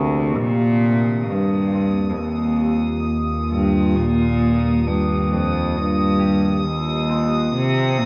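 Peaceful and luminous, this short ambient fragment sets an up-front, reedy cello melody with gut-string tone and light vibrato, colored by cassette tape and analog delay, over a warbly, nostalgic tape-like pad of sustained chords, a very quiet ringing harp playing arpeggios, a deep rumbling drone entering at 1.6 seconds, a brief bright bowed-like drone at 0.4 seconds, and a drifting glassy harmonics texture from 1.0 seconds, all within a small room's spring reverb on a homemade cassette.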